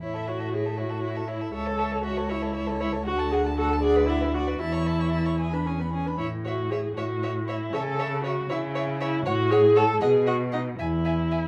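Graceful and cheerful, this quick classical-period string quartet movement in A major flows at 78 BPM in a rubato 6/8. A distant-sounding first violin carries the melody with vibrato and portamento, while the second violin adds an even second line with light vibrato. Up front, a dark, soft-edged viola supplies the accompaniment and a rich, smooth cello anchors the bass, all set in a moderate large-studio reverb in this passage cut from a longer piece.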